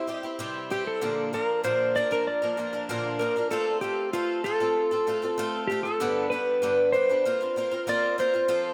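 A bright, shimmering twelve-string acoustic guitar, picked and octave-doubled, and a dark, clean lap steel carrying the melody with slide and volume swells sit up front together in this jangly, warm rock excerpt at 96 BPM in a straight 4/4, both drenched in analog delay within a moderate spring reverb for an echo-heavy sound, as the harmony moves from C through Bb, F/A and G to a closing Bbsus2.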